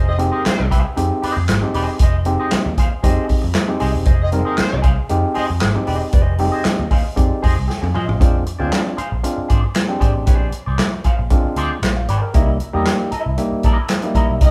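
A twangy electric guitar and a dark, round, foam-muted picked bass open this driving, hypnotic funk cut in F dorian at 116 BPM, with the guitar run through wah and spring reverb. A mellow, tight horn section sits back as a second line from 0.1 seconds until 5.4 seconds, while an overdriven auto-wah clav through a combo amp adds percussive, stringy stabs. The drum kit is the loudest part, with a boomy kick, a medium-tuned snare, hi-hat, toms and handclaps, roomy and distant in character yet up front in the mix. Over the opening Fm7 the clav plays a fill from 6.7 seconds, joined by a drum fill just before the harmony shifts to Bb9 at 8.2 seconds and later to C7#9. The band sounds like it is playing live together in one large studio room, with a moderate reverb tail giving the groove a natural, open space.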